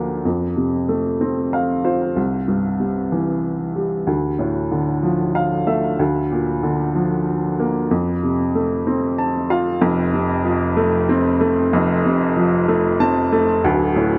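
A solo upright piano opens this short pop fragment. Its clear, woody tone sits up front, touched by tape echo and a light reverb. The mood is swaying and heartfelt, moving at 63 BPM counted in dotted quarters in a straight 6/8 in F major, tuned to A4 = 444 Hz. The piano spans D1 to A5 and moves through F, C, Dm, Bb/D and back to F, with short fills starting at 1.2, 5.0, 8.9 and 12.7 seconds. A new section arrives at 9.8 seconds, and the passage closes on a D5 chord at 13.6 seconds.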